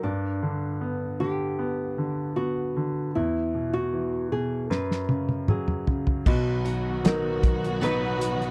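A damped 70s drum kit with a fat snare and tight kick enters with a fill at 4.7 seconds in this emotional, hopeful pop ballad at 77 BPM. A small, thumb-plucked nylon-string guitar carries the melody over a clear concert grand piano with deep bass and short sustain, and a lush, bowed string section with vibrato and a fingerpicked steel-string acoustic guitar with audible finger squeak join at 6.3 seconds, all in a dry, close 1970s-style studio sound.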